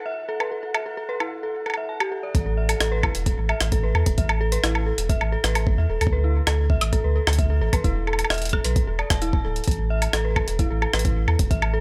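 Glitchy and melancholic, this IDM piece moves at 131 BPM in a straight 4/4, tuned slightly below standard pitch, in a short cut from a longer work. It opens with a flickering, grainy granular texture held in the background, bathed in its own reverb and pumping against a sidechain, while an eerie, detuned FM synth bell spins arpeggios over an Esus24 chord, its inharmonic, warbling tone smeared by chorus, delay and vintage 12-bit sampler grit. A jungle-style sampled kit of hi-hat, rim click and woodblock sits up front from 0.4 seconds, pitched up, compressed and overdriven into a gritty crunch. At 2.3 seconds the texture drops out as a round, sine-based sub bass and a thumpy, overdriven electronic kick arrive together, anchoring a progression that cycles through A5, D5 and E5 power chords. A digital ambience frames the whole arrangement, keeping the mellow bell and deep bass suspended in a dim, haunted space.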